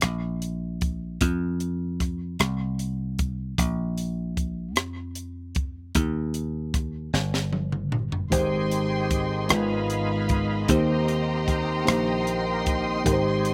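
Uplifting and reverent, this slow gospel excerpt in a straight 6/8 opens with a dry, foam-muted thumbed slap bass and a crisp, polished fusion drum kit with a high-tuned snare and punchy kick, both up front. After a drum fill from 7.1 to 8.3 seconds, a mellow tine electric piano enters alongside a bright, lightly overdriven tonewheel organ with key click, chorus vibrato and a slow rotary speaker. A lush bowed string section holds sustained chords above them. The sound is dry, with little reverb.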